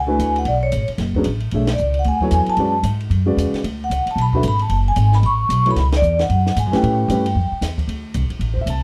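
Searching and intense, this brief modal jazz excerpt in B dorian races along at 226 BPM with a swung 4/4 feel, as a ringing vibraphone with fast motor vibrato carries the melody until 7.6 seconds. A woody, thumpy pizzicato upright bass and a mellow vintage grand piano sit up front, while a compact cocktail kit with dark cymbals, a high-tuned snare and a punchy kick sits further back, and the whole band hits accents at 1.6 and 5.9 seconds. The sound is dry and close, like a 1970s studio session.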